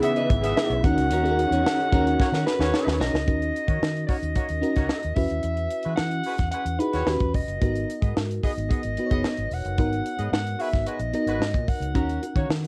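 Polished 1980s jazz-funk pop with a bittersweet, nocturnal mood, cut from a longer piece and heard as a light-reverb home recording on cassette. A mellow, roomy soprano saxophone with plate reverb carries the melody over a tight horn-section second line and a sparkling, bell-like FM electric piano with tremolo and analog chorus, driven by a dry, up-front drum kit with a high-tuned snare and a dark, foam-muted fingered bass entering at 0.3 s. Veiled con sordino strings and a clean, picked guitar with lush chorus sit in the background through the opening until 3.2 s, as a drum fill starting at 2.2 s leads into the next section, and the guitar returns at 11.9 s over chords moving from C#m9 through D#7alt to G#m7.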